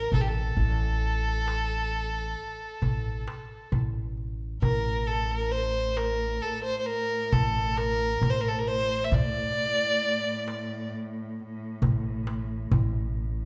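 A single bowed violin leads this hypnotic, melancholic Arabic maqam ensemble piece, its rich, focused tone carried by vibrato and a smooth top as it sings up front between G4 and E5. The music moves in 10/8 at 134 BPM counted in eighths with a straight feel, set in A maqam kurd and tuned to A4 = 439 Hz. Beneath it, a pizzicato upright bass with steel strings gives a woody, dark, thumpy low line from A1 to A2, while a metal-shell darbuka struck with hard hands sounds crisp, close and dry. At 4.6 s a bowed cello enters with a distant, even drone on A2, its smooth tone and light vibrato sitting well behind the other parts. The violin falls away at 10.9 s, leaving the bass, darbuka and cello to carry this short section of a longer performance, all heard in the moderate reverb of a recital hall.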